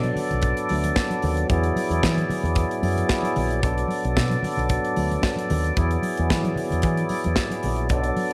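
A percussive tonewheel organ with key click and a slow rotary speaker sits up front holding sustained chords that move between Bm7 and E9, over a bright fingered electric bass with an envelope filter, a polished, airy studio drum kit with a tight kick, and damped, soft-handed congas in the background, giving this sultry, glamorous disco excerpt at 112 BPM a light reverb and studio ambience.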